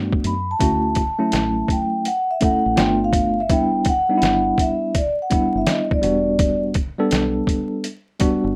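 Relaxed and warm, this short jazz-hop cut from a longer hip hop piece sways at 83 BPM with a swung feel, moving through Gmaj7, Dmaj9, G9 and Em9. A soft-mallet vibraphone carries the ringing, metallic melody up front from 0.3 to 6.6 seconds over a worn, slightly out-of-tune tine electric piano that is lightly overdriven through a combo amp with fast tremolo. A muffled, pitched-down sampler-style trip hop kit with a thumpy kick also sits up front, while a dark, round, foam-muted fingered electric bass lies underneath, all in a rough home-demo mix with light reverb and vinyl crackle.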